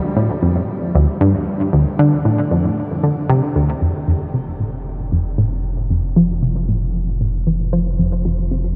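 A huge, wet reverb with a long nine-second tail surrounds this dark, cosmic piece of sequencer-driven space music, cut from a longer work. A tight, driving sequenced synth riff opens almost at once, its detuned sawtooth tone shaped by a plucky filter and thickened with chorus and analog delay, sitting up front in the low register. From 3.8 seconds a filter sweep moves across the synth, and a deep, round sine sub bass enters beneath it, also placed close and prominent. The harmony rests on a single minor chord before dropping away to an open, chordless stretch as the bass arrives. The overall feel is expansive and steady in straight four, with a warm, dusky production.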